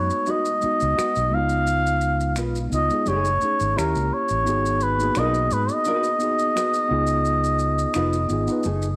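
Soulful and introspective, this neo-soul and R&B passage, cut from a longer piece, moves at an unhurried 86 BPM in 4/4 with a gentle swing on the sixteenths. A cup-muted trumpet carries the solo melody up front, its veiled, soft-attacked tone colored by a light vibrato in a jazz style. Beneath it, a mellow tine electric piano lays down clean, direct chords, moving from G#m7 through C#9, F#m69 and D#7b9 before returning to G#m7 and C#9. A fingered electric bass sits prominently with a dark, round, amped sound, while a thumb-plucked nylon-string guitar adds a full-bodied second line in the background, complete with audible finger squeak. Close maracas and finger snaps with a group handclap feel enter at 0.1 seconds, and the whole mix sits in a moderate echo-chamber reverb with a small-room ambience.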